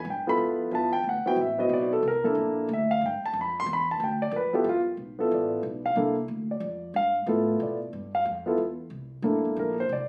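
A swung triple-metre lilt carries this relaxed jazz excerpt, where a dark, mellow concert grand piano sits up front with deep bass, soloing over the first 5 seconds across rich thirteenth chords, while a woody, thumpy pizzicato upright bass on gut strings sits low and soft beneath it, all captured on a phone in the room and bathed in moderate studio reverb.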